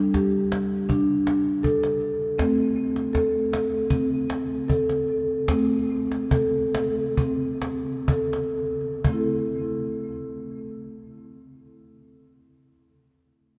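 Hypnotic and meditative, this world piece cut from a longer work sets a round, woody marimba, played with soft mallets in up-front arpeggios trailed by diffuse ambient delay, over a snappy, saturated cajon that drops out at 9.5 seconds, all in a vast cathedral-like space with long echoes as the music slows between 2.4 and 9.0 seconds.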